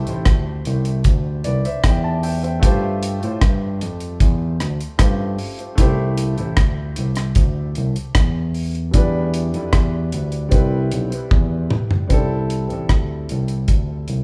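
A dry, dark acoustic reggae drum kit sits up front with a tight kick, hi-hat, rim clicks and toms, playing a fill from 11.3 to 12.1 seconds just before the music moves into a new section. Alongside it, a bright, barky tine electric piano played clean through a combo amp, also up front, carries the bass line, while a warm grand piano with tape echo supplies chords over changes such as C6, G9sus4 and Em7. Cut from a longer piece, this tender, sweet lovers rock reggae has the light reverb of a band playing live in one room.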